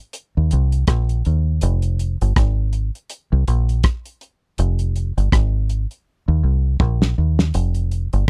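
A deep, round, foam-muted fingered electric bass sits up front from 0.4 seconds alongside a damped, dry 70s drum kit of tight kick, fat snare, rim click and hi-hat, giving this hypnotic, meditative roots reggae excerpt at 81 BPM a close, dry studio sound before a drum fill arrives at 6.1 seconds.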